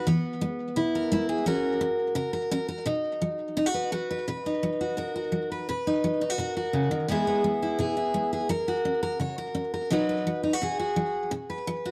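A dry, close recording with a 1970s studio feel and a light touch of reverb places a lone picked steel-string acoustic guitar up front, its jumbo body sounding bright and full, with audible finger squeak and a tape echo on its sound. This down-home, nostalgic country passage, cut from a longer piece, moves in a straight four through E, F# and B chords, returning to E at 7.1 seconds and landing on B at 9.9 seconds. The guitar ranges from B2 up to C#5 and plays alone for the full 11.9 seconds.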